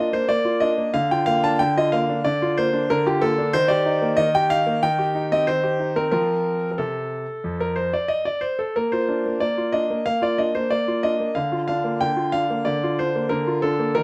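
In a straight, even four, this elegant and graceful classical-period sonatina fragment, cut from a longer piece, features a solo concert grand piano whose brilliant, polished tone, deep bass and long sustain sit up front in a moderate stone room reverb as the harmony moves from Bb through Eb, Cm/Eb and F before settling back on Bb.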